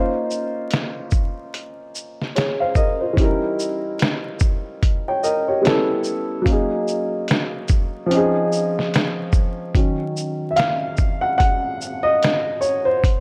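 A dark, woody upright piano opens this dreamy, nostalgic lo-fi hip hop excerpt with mellow, vintage-toned extended chords moving from Dbmaj13 to Ebm7, joined at 0.3 seconds by a compressed, pitched-down, muffled sampler-style drum kit of thumpy kick, medium-tuned snare, hi-hat and shaker in a swung 4/4, both parts sitting up front under a moderate plate reverb and vinyl crackle, with the piano taking a solo from 9.7 seconds.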